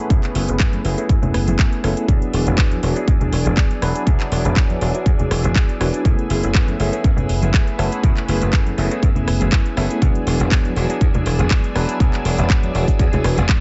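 A lightly swung groove drives this filtered disco house excerpt, with a punchy, tape-warm electronic kick up front and a house kit of handclaps, rim clicks and metallic hi-hats beneath it. Tambourine and softly played congas sit in the background, bright and small-roomed, while a dry thumbed slap bass, direct and foam-muted, pushes forward in the low end. A barky, gritty tine electric piano, overdriven through a combo amp with fast tremolo and phaser, carries the accompaniment over a clean, compressed electric guitar riff tucked in the background. A lush vintage string machine holds slow-attack sawtooth chords with ensemble chorus, moving between F#m11 and E7 for a nostalgic, groovy mood. A low-pass filter sweep runs across the whole excerpt on most parts, and sidechain pumping makes the piano, strings, guitar, bass, percussion and the kit's hats and cymbals breathe against the beat inside a digital ambience.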